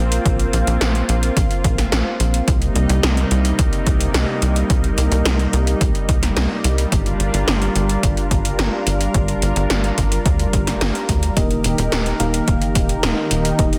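Driving straight 4/4 at 108 BPM, this romantic, dreamy synthwave excerpt sets a punchy, tape-warm electronic kick and 80s electronic pad drums with a gated snare and metallic hats under a tight sawtooth sequencer bass and a lush, detuned unison pad, both pumping with sidechain, moving through Bbsus2, Cm7 and Gm7 to Eb, where a round, warbling FM electric piano enters at 11.4 seconds with chorus and tape echo, all in a dense, heavily limited mix with light reverb.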